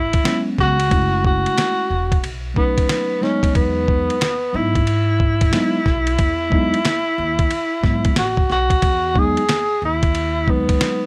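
Smooth and cool, this jazz-hop excerpt in E major rolls along at 91 BPM with a swung 16th-note feel, as a breathy, whispered tenor saxophone carries an intimate, vibrato-laced melody with scooped notes up front, over a growly pizzicato upright bass, a dusty sampler-style drum kit with a thumpy kick and fat snare, and a mellow tine electric piano comping through chords from Eadd9 to Emaj9, all set in light reverb.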